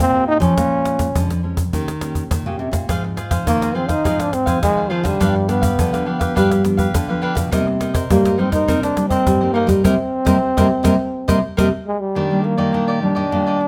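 This lively, nostalgic blend of samba and choro moves in a straight four and is cut from a longer piece. A warm, jazz-style trombone carries the melody up front as a solo voice, shaded with light vibrato. Beneath it, one fingerpicked nylon-string guitar plays full-bodied accompaniment while a second takes the bass line, both in a deep classical manner, and an audible finger squeak comes from one of them. A snappy cajon with snares sits close and dry, and a mellow, crisp picked cavaquinho joins at 2.9 seconds. The band hits a shared accent from 9.8 to 12.2 seconds, the cajon drops out just before the close, and a brief new section opens on an Ebmaj7 chord, the whole recording set in a moderate studio reverb.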